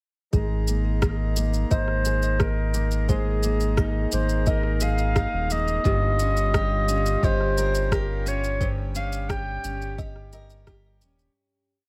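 A delicate, pastoral folktronica piece in Ab major at 87 BPM, its straight 4/4 groove running from the start to nearly the end, with a fade-out from 7.7 seconds. A round, dark analog bass sits up front with long gliding notes, beneath a soft, overdriven electronic kick and a clicking found-sound beat of overdriven shaker and rim. A bright, fingerpicked steel-string acoustic guitar rolls through arpeggios under a low-pass filter sweep, while a reedy, breathing pedal harmonium holds sustained chords in the background, moving from Absus2 to Eb7/G at 5.8 seconds. A woody, hollow kalimba repeats a 16-step sequence as a second line, colored by vintage 12-bit sampler grit and digital delay. At 1.7 seconds a breathy clarinet enters up front with a subtone, light vibrato and jazz-style hook phrases, carrying the melody until 10.0 seconds, all set in a light small-room reverb.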